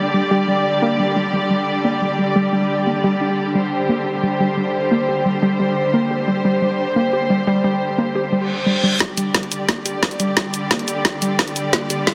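Dark technical drum and bass at 176 BPM, aggressive and futuristic, this excerpt opens on veiled, muted strings holding sustained chords alongside a warbling, lo-fi pluck playing arpeggios through chorus and delay, both pumping against the sidechain while a filter sweep runs over the arpeggio. A reverse cymbal and riser arrive at 8.4 seconds, and at 9.0 seconds the drums enter for a build-up and fill, with a woody snare, bright hats and cabasa up front and a tight electronic kick sitting in the background. A lush hall reverb surrounds the dense, heavily limited mix.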